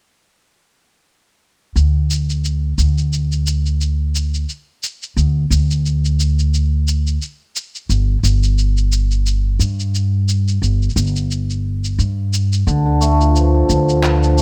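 At 1.8 seconds a woody, growly pizzicato upright bass on steel strings sits up front under a filter sweep, together with muffled, pitched-down electronic cabasa and handclaps set low in the mix, giving this autumnal, delicate folktronica excerpt a gently swung pulse in a small room. At 12.7 seconds a mellow, shimmering hammered cimbalom arrives up front with ringing arpeggios over a D minor chord, coloured by delay and the grit of a vintage 12-bit sampler.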